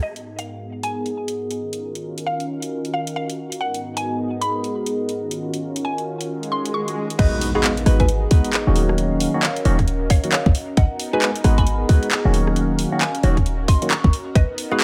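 UK garage in a two-step style at 134 BPM with a soulful, skippy swing, this excerpt opens on a woody, round mallet-like synth pluck carrying the melody over a smooth analog pad that rides a filter sweep, soon joined by a dark, warbling tape-like pad with sidechain pumping, while a house drum kit of bright hi-hats, bongos, rim clicks, handclaps and crash adds an overdriven edge. An electronic swell builds from 6.4 seconds into an impact, and at 7.2 seconds the drop arrives with a tight layered kick, a punchy 808-style bass sitting up front, and barky electric piano stabs run through overdrive, phaser and tape echo. Underneath, the harmony rocks between G#m7 and D#m7 in G# dorian, set in a light digital ambience.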